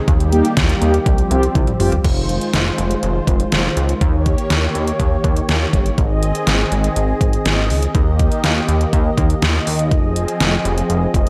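Knocking, overdriven pop drums with gated reverb drive this cool, melancholic synth-pop excerpt in F minor at 122 BPM, alongside a glossy chorused pulse-wave synth bass, a bold, airy brassy analog pad holding sustained chords, and a round, detuned synth brass heard only from 0.3 to 1.9 s before a drum fill at 1.6 s opens the section that moves through Fm7, Eb7 and Ab.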